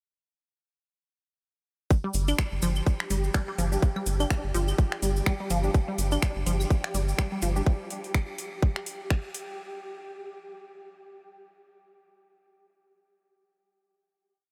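A light reverb gives this cool, quirky minimal techno piece a tidy sense of space. It runs at 125 BPM in 4/4 with a 16th-note swing, and it is built almost entirely around a single drop from 1.9 to 9.6 seconds. A tight, up-front electronic kick holds a four-on-the-floor pulse, joined by a garage kit of metallic programmed hats and finger snaps on the backbeat. Tape-warm claves with delay click in cross rhythm in the background, and a distant, bright cabasa plays hand-played sixteenths. A rubbery, hollow square bass bounces off the beat around G1, pumping against the kick, while a juicy, squelchy blip pluck loops a 16-step sequence between F3 and D4 through chorus, phaser and a diffuse ambient delay. Very quiet, crisp wavetable chord stabs enter at 3.7 seconds with sparse echoing shapes moved in parallel, and a flickering, granular texture holds a high G4 in its own reverb, lingering until 9.6 seconds.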